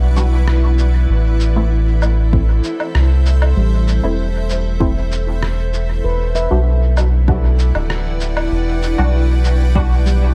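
Ambient dub at 97 BPM in A dorian, meditative and hazy, with a round, up-front sub bass carrying tube saturation beneath a blurred, evolving granular cloud pad, a ringing handpan playing dub-echoed arpeggios in the background, muted sawtooth chord stabs colored by phaser, chorus and cassette tape, and muffled, pitched-down shaker, rim click and woodblock, while an overdriven electronic kick enters at 2.3 seconds, all moving through Em7 and Am in a dark, digital ambience.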